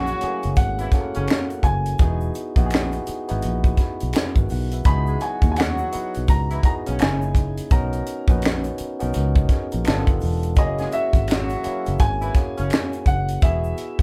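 Smooth and sultry, this swung R&B and neo-soul excerpt sets a natural-toned grand piano melody over a barky, lightly overdriven tine electric piano that adds a fill at 3.4 seconds, with distant, roomy jazz horn stabs that drop out at 12.9 seconds, a round, foam-muted fingered bass, an up-front tight funk kit with a high-tuned snare, and a very quiet egg shaker and finger snaps, all played live in one room with light reverb.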